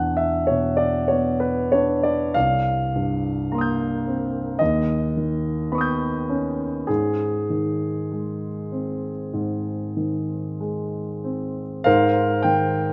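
A concert grand piano sits up front in a moderate concert hall, its long sustain blooming into the room's reverb. This excerpt of impressionist solo piano in the classical tradition feels luminous and dreamy, moving in an unhurried 4/4 with free rubato. The instrument has a deep bass and an open tone, ranging from C2 up to G6. The harmony drifts through colorful chords, opening on E7, then passing through Cm7 and an augmented E-flat seventh before settling on A-flat at 6.9 seconds. At 11.9 seconds the opening material returns briefly over an Abadd9 chord, and the passage breaks off at 12.9 seconds.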